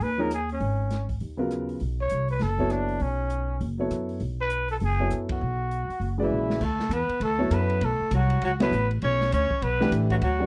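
A dry, close studio sound with light reverb and a 1970s character frames this short, cool and searching modal jazz excerpt, swinging briskly in four. A growling trumpet carries the melody from the start, raspy and gritty with scooped notes and vibrato, sounding distant and roomy yet up front, with a slapback echo trailing its phrases. Beneath it, a pizzicato upright bass gives a thumpy, woody pulse on steel strings, while an upright piano with short sustain supplies the accompaniment and the open jazz drum kit, dark-cymbaled with a boomy kick and rolled-off top, works through ride, hi-hat, snare, rim click and crash. The band hits accents at 5.3 and 8.6 seconds, and a drum fill leads into the second section at 6.6 seconds, where the harmony settles from suspended, extended chords onto a minor ninth. A tenor saxophone with a smooth top and light vibrato joins at 6.2 seconds, adding a lower second line beneath the trumpet through to the end.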